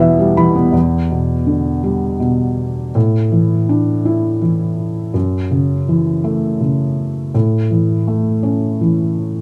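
The recording has a dark, warm sound, set in a moderate studio room with a modest ambience. It is a brief folk piece in three-four time, taken from a longer work, and its mood is reflective and heartbroken. A single felt-muted upright piano carries everything, sitting up front with a soft, mellow, intimate tone that spans from deep bass notes to high upper ones. The harmony moves from Em through Asus4 and F#m7 before arriving on A near 7.3 seconds. The felt dampens every note, giving the playing a hushed, private quality that suits the sorrowful character of the music.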